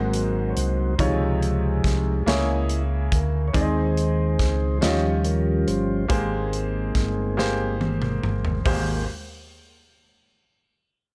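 Slow gospel in 6/8 at 47 BPM in Ab major, uplifting and jubilant, where a mellow, flute-like tonewheel organ with key click and a slow rotary speaker takes the solo over a bright, woody upright piano, a dark, round fingered electric bass and a polished studio drum kit with a punchy kick that plays a fill from 7.4 seconds, all in a light reverb, cut from a longer piece.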